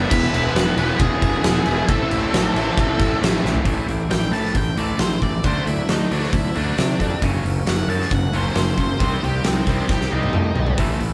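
A live band sound in one room with light reverb, led by an up-front, oversized low-tuned drum kit with a fat snare, punchy kick and dark cymbals, in a dark, cathartic alternative rock excerpt at 135 BPM in A minor. A crunchy overdriven guitar, a compressed overdriven guitar and a barely audible mellow tonewheel organ on a rotary speaker play alongside the scooped high-gain guitar riff and the growly fuzz bass before dropping out at 3.7 s, where the key shifts to A dorian. From there an octave-fuzz lead guitar takes a solo over a twangy, clean arpeggiated guitar in the background, with a drum fill near the end and the overdriven guitar briefly returning in the final moments.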